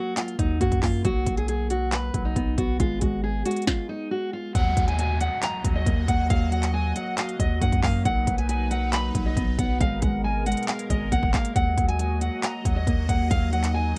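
A dark, full-bodied fingerpicked steel-string guitar carries the melody over a ringing, thumb-plucked Celtic harp, both muffled by a low-pass filter, opening this melancholic, menacing half-time trap excerpt in Eb minor at 137 BPM, joined by up-front trap drums with a hard-clipped kick, sharp snare, crisp hats and handclaps, plus a deep, decaying sine 808 bass; after a brief stop at 3.7 seconds, a bright, detuned sawtooth pad with chorus, a slow attack and a resonant filter swell arrives at 4.5 seconds alongside a downlifter in the background, all with very little reverb.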